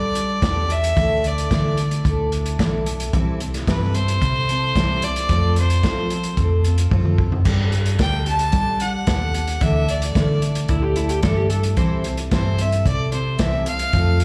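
A live club sound fills this short folk rock and heartland rock excerpt, heard through the venue's PA with roomy reverb, at a straight 111 BPM in 4/4 and in a nostalgic, warm mood. A distant, earthy fiddle carries the melody with slapback and tape echo over a shimmering, octave-doubled twelve-string acoustic guitar, a round, punchy fingered bass and an up-front, muffled vintage kit with dark cymbals, which enters at 0.2 seconds and plays a fill at 6.9 seconds. The chords move through Gadd9, Dsus2, C6 and F, and a dark, slightly broken-up electric slide guitar adds a brief second line from 10.7 to 12.2 seconds.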